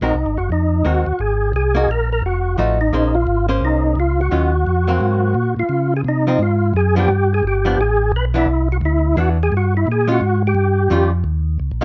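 From the very start, a soul jazz organ trio is heard all at once: a percussive tonewheel organ carries the melody over an archtop guitar and a second organ playing the bass. The mood is greasy and bluesy, with a brisk swing feel on the eighth notes. The lead organ is full and lightly overdriven, with third-harmonic percussion, key click, chorus vibrato and a fast rotary speaker, and it sits up front before dropping out at 11.1 seconds. Beneath it, the bass organ is round, dark and clean, with key click, vibrato and a slow rotary speaker. The hollow-body guitar, picked and compressed with an electric but shadowy tone, fills in the accompaniment. The harmony moves through rich extended chords such as Ab9, F7b9, Dbmaj9 and Cmaj9, and the clip, cut from a longer piece, ends at 11.8 seconds on an Eb9 heading into an Eb7 chord that omits its third, in a close, detailed sound with light reverb.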